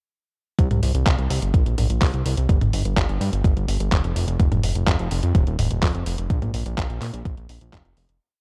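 An overdriven, thumpy electronic kick sits up front, driving a four-on-the-floor pulse through this short, bittersweet italo disco piece from 0.6 to 7.8 seconds, with a small room's ambience clinging to it. A fat, detuned sawtooth bass runs beneath as a sequenced sixteenth-note line, its sound thick and evolving under a filter sweep, with a fast attack and sustained notes placed up front. A detuned 8-bit digital drum machine fills out the disco beat with handclaps, closed and open hi-hats and a high tom, touched by small room reverb. The whole thing plays as a single nostalgic chorus in a dark production with little reverb overall. It fades out from 5.7 seconds to its close at 8.2.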